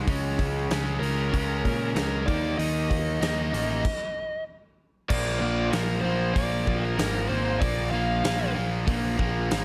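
Classic rock in a straight 4/4, sunny and swaggering, cut from a longer piece. A double-tracked, overdriven electric guitar sits up front with the riff alongside a round, fuzzy picked bass that is also overdriven and placed up front. A big acoustic rock kit, recorded naturally in a big room, drives it with bright cymbals, a medium-tuned snare, a tight kick and hi-hat. From 1.0 s, a bluesy, distorted lead guitar with slapback echo carries the melody above the band. A stop arrives at 3.8 s, and at 5.1 s the music moves into a new section as the chords shift from Db5 and Eb5 to Bb5, with light reverb giving the room some air.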